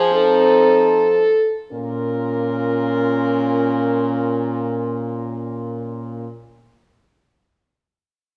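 A present, up-front French horn carries the melody in this melancholic, yearning classical excerpt for horn quartet, a lyrical piece in a lilting six-eight with a free, rubato feel that slows over the opening 1.7 seconds. Beneath it, a warm, distant, roomy horn plays the bass in the background, another warm, distant, roomy horn adds a second line, and a dark, smooth-topped horn supplies accompaniment. The harmony settles from F7 onto B-flat minor at 1.7 seconds, with everything heard from further back in a wet stone room.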